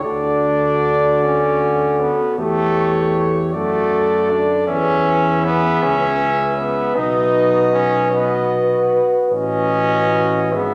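A clear, close-miked solo trombone sits up front in this tender, serene hymn-like brass band piece in a rubato 6/8, with a warm, punchy cornet carrying the melody above it. A tight French horn section, dark and distant with light vibrato and soft attacks, shapes the second line, while a smooth-topped trombone section adds accompaniment and a mellow tuba holds the bass. The ensemble plays throughout in a reverberant recital hall, with the harmony settling into its home key from 4.7 s.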